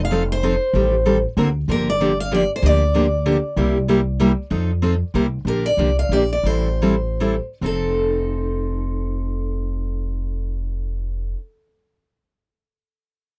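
A lilting swing in three, with eighth notes pushed into a gentle shuffle, drives this short, playful cut of acoustic string jazz manouche taken from a longer piece. An upright bass anchors the low end with woody, thumpy pizzicato on gut strings, its dark tone sitting up front. Two picked steel-string acoustic guitars share the foreground, one carrying the melody in a high register and the other supplying accompaniment beneath it, both bright and auditorium-sized, with finger squeak audible on the strings. The harmony moves through dominant sevenths, a half-diminished chord and an augmented seventh before settling on a Bb6 and Am7. The pace slows between 5.5 and 7.6 seconds before the F7 returns at 7.6 seconds. Light reverb colours a dry, close sound in the manner of a 1970s studio session.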